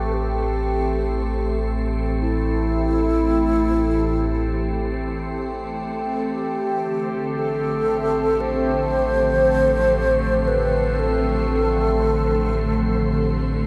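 From the first moment, a mellow alto flute sings the melody up front in this serene, spacious ambient piece in free time and A minor. Its tone is airy with vibrato and tongued, expressive phrasing, and a tape echo trails its lines. Beneath it, a deep, ominous drone on A1 rumbles and warbles with a vintage character. An analog drone adds a detuned, chorused and phased layer. An evolving wavetable pad fades in with morphing sustained chords, moving from Am7 to Dm7/A at 6.4 seconds. A wind-like tuned noise texture also fades in, sitting airy and faint in the background. The whole fragment is bathed in a wet cathedral reverb with a dark production, and it fades out from 11.9 seconds to its close at 13.7 seconds.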